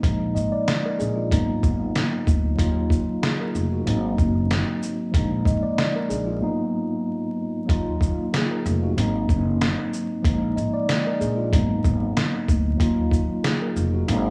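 A mellow tine electric piano, colored by cassette tape and filtered at both ends, opens this moody, tough boom-bap hip-hop passage in Eb harmonic minor at 94 BPM, alongside a woody, dark pizzicato upright bass and a gritty, pitched-down sampler-style drum kit with a thumpy kick, medium-tuned snare, hi-hat and shaker, all swinging lightly on the 16ths. The up-front piano cycles through Bb7sus4, Abm7, Ebmadd9 and Ab7, while the compressed drums carry the roomy weight of a large space. Vinyl crackle and small-room ambience hang over the mix, and a break at 6.4 seconds leads into the second section at 7.7 seconds before this cut from a longer piece ends.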